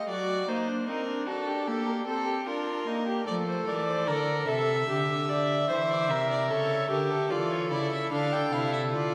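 In a straight 4/4 at 74 BPM, this elegant, lively baroque-style fugue for string quartet, cut from a longer piece, sets a rich violin melody with light vibrato over a close, airy-bowed viola accompaniment that sits up front and a distant, nasal second violin line, with a smooth-topped dark cello bass entering at 3.3 s, all four single players bowing gut strings in period style with a reedy edge inside a lingering church reverb.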